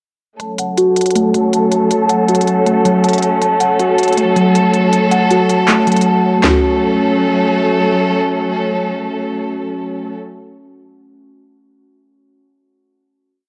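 Muted, felt-like synth keys sit up front, playing a dark, intimate falling arpeggio in eighths that repeats like a sampled loop, with chorus, tape echo and a low-pass filter softening their triangle-and-sawtooth tone and a faint noise layer. This short, melancholic yet hard-hitting trap piece in F# minor moves at 159 BPM in a half-time feel, resting on a single F#m chord. A rich chamber string section holds sustained chords alongside the keys, its bowed ensemble sound focused and touched with vibrato. From 0.4 seconds an electronic trap kit adds a sharp snare, crisp hats with fast rolls, handclaps and toms. A filter sweep runs across the breakdown, and after a brief silent gap the drums drop out at 6.5 seconds, leaving strings and keys on a final chord that rings until 10.2 seconds. Light reverb and a cassette-tape character give the whole piece a homemade, lo-fi grain.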